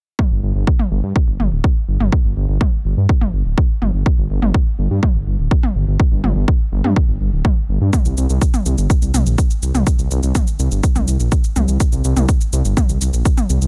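A punchy electronic kick drum opens this melodic techno excerpt at 0.2 s, placed forward in the mix, and layered electronic toms and shaker enter alongside it. At 0.3 s a dark detuned saw bass arrives, deep and rumbling, its unison sawtooth voices beating against a sine layer across a range from D1 to G2, with sidechain pumping. The groove moves at 124 BPM in a straight 4/4 in G minor, and the mood is dramatic and hypnotic. Both drum parts carry a produced, tape-warm character, with the toms and shaker sitting lower than the kick. The bass has a fast attack and sustained notes and sits up front, the sound is dry with little reverb, and the kick stops at 13.4 s.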